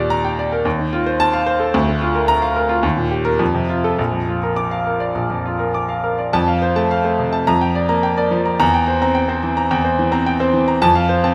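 Brilliant and sparkling, this short cut from a longer virtuoso classical piano study features a solo baby grand, bright, intimate and up front with audible action noise, played with free rubato across a range from Bb1 to D6 in a large studio's moderate reverb before moving into a new section at 6.3 s.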